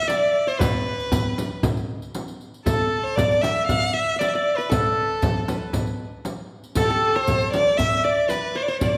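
A rich, focused single violin leads up front, its bowed melody carrying a singing vibrato through a festive, warm Arabic maqam ensemble piece cut from a longer work. Beneath it, a bright-edged qanun played with fingerpicks adds a second line, its triple strings giving a glinting, acoustic shimmer. The percussion enters at 0.1 seconds. A crisp metal-shelled darbuka is played with soft hands. A deep, large frame drum anchors the low end, and a riq with hard hands adds bright jingles. The straight, steady groove sits in a wet recital hall, whose lingering reverb lends the short passage a spacious, celebratory glow.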